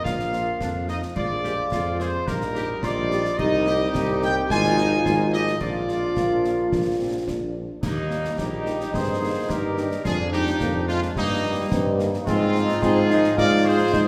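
A proud, rousing military-style march for wind band at 108 BPM in 2/4, opening in Bb major and moving to Eb major from 3.4 s, with a dark, up-front trumpet section carrying the melody over a warm woodwind second line, sustained chords from a mellow trombone section, background accompaniment from a tight, punchy French horn section, and a soft-attacked, up-front tuba bass line, while concert snare drum, concert bass drum and clash cymbals with dark cymbals keep the march going, a vibrato-laden euphonium joins on a second line at 6.2 s, and a wet concert hall reverb surrounds this excerpt cut from a longer piece.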